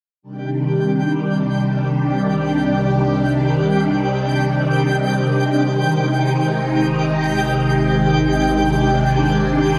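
Heard through the soft haze of cassette tape and a long, wet plate reverb, this brief excerpt from a longer piece of ambient, sequencer-driven space music floats in free time with a hypnotic, cosmic mood. Up front, a swirling vintage string machine with a sawtooth edge holds slow-blooming sustained chords, its ensemble chorus and phaser giving it a bright, churning glow as the harmony moves from Cmadd9 to Ab at 5.7 seconds. Above it, entering at 0.4 seconds, a twinkling granular texture adds FM sparkle and an octave-up shimmer, drifting softly in its own built-in reverb.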